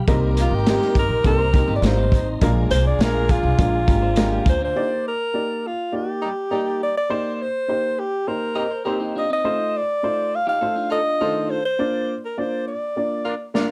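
Dark, lightly reverberant production frames this danceable cut from an uptempo 1960s-style soul piece, where a clear alto saxophone carries the melody with vibrato and a soft attack over a mellow horn section and an intimate, slightly detuned upright piano, while a gritty, saturated breakbeat kit, woody pizzicato upright bass, background tonewheel organ with key click and a slightly broken-up electric guitar riff drop out around 4.7 seconds, the guitar returning at 8.6 seconds before a drum fill at 13.5 seconds.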